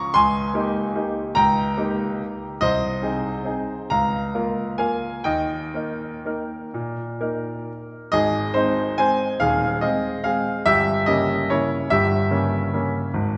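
Set in a wet church reverb with a 2.7-second decay, this graceful, elegant classical piano waltz in Ab major sways in a rubato 3/4 between 117 and 156 BPM, its solo concert grand sounding clear, open and up front, with deep bass and short sustain, as it moves from an opening theme into a contrasting passage at 8.1 seconds and touches harmonies such as Eb7/Db and Gdim7 in this brief cut from a longer piece.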